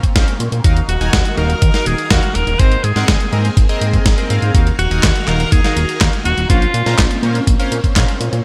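A glossy, lightly reverberant italo disco excerpt in Eb dorian at 123 BPM, nostalgic and danceable, where a gritty, thumpy electronic kick and a dusty soul sampler-style kit of handclaps, hi-hat and snare with gated reverb play alongside a fat, tube-saturated analog bass, while a chorused polysynth plays retro stabs from 0.2 seconds, a swirling phased string machine holds sustained chords in the background, and an edgy alto saxophone with light vibrato and delay carries a forceful pop-style melody from 0.9 to 7.2 seconds over chords moving from Bbmadd9 through Ebmadd9 and Abadd9.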